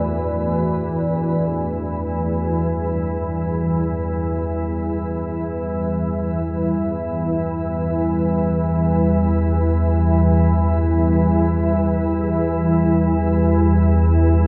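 An up-front, nasal organ-like drone holds the low end through this ominous, dark ambient drone excerpt in free time and E minor, joined by a deep, moody pad of detuned, warbling sustained chords that shift from Bm7/E to Em at 1.5 seconds. A grainy, flickering texture sits in the background on a single high note, fading in from 1.5 seconds. The whole piece is bathed in a huge, wet reverb and carries the worn, warbly pitch drift of old cassette tape.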